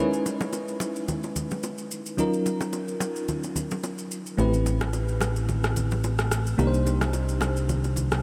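A lightly swung 16th-note amapiano groove of electronic shaker and rim click, with ringing, dry hand-played bongos and congas, sets a hypnotic, late-night mood beneath a sparkling, bell-like FM electric piano with chorus and tremolo drifting through C#m9, D#m9, Am9 and Cm9, until a punchy, funky analog bass plucks in at 4.4 s, all steeped in a dreamy, huge ambient reverb in this short cut from a longer piece.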